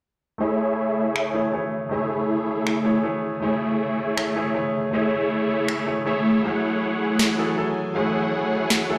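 A lush hall reverb and the bloom of a big system sounding through a bare room surround this short cut from a longer future bass piece, which has a lush, playful mood and a half-time feel. From 0.4 seconds, huge detuned supersaw chords sit up front, bright and sustained with a phaser's moving notch and tape echo. A felt-muted upright piano plays soft, intimate accompaniment alongside them, its thin felt and audible action noise roughened by 12-bit sampler grit and run through a filter sweep. Behind them, an airy, breathy pad with a slow attack and long release adds warbling, chorused sustained chords, also carrying grit and a filter sweep. Electronic finger snaps and a sharp, produced snare arrive at 1.2 seconds with studio ambience. The harmony rests on Amaj7 before shifting to F#m9 at 6.4 seconds.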